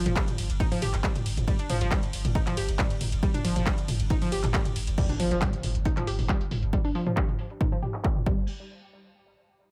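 A punchy electronic kick and a techno drum kit with metallic hats, claps, toms, ride and crash drive this relentless, intense peak-time techno excerpt alongside a bright, ring-modulated analog pluck riff with chorus and dub echo and a deep, round sine sub bass pumping beneath, while a very quiet impact arrives at 5.0 seconds as filter sweeps move across the drums and the synth.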